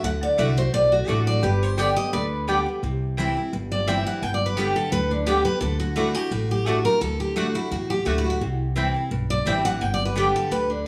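Driving and lively, this bluegrass excerpt in G major runs at a brisk 172 BPM with a light swing, as an up-front picked steel-string acoustic guitar carries the melody with fresh-string brightness, audible finger squeak and a touch of plate reverb. A second picked acoustic guitar with a full-bodied dreadnought tone supplies accompaniment over a growly, thumpy pizzicato upright bass, while a woody mandolin adds double-string stabs from 0.4 seconds. A nasal, metallic lap resonator guitar played with slide and fingerpicks offers a second line only until 2.8 seconds, and the whole sits in a moderate studio room.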